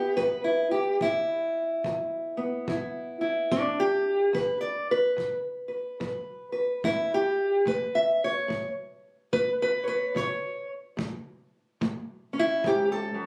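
Rollicking and swaggering, this short cut from a longer acoustic country blues piece swings along as a fingerpicked steel-string acoustic guitar carries the melody up front with a dark, boxy parlour tone and plate reverb, moving from an E5 chord to A at 6.8 seconds, while a natural, punchy kick drum played with brushes sits low beneath it, all heard through a phone recording in a room with a club-like reverb.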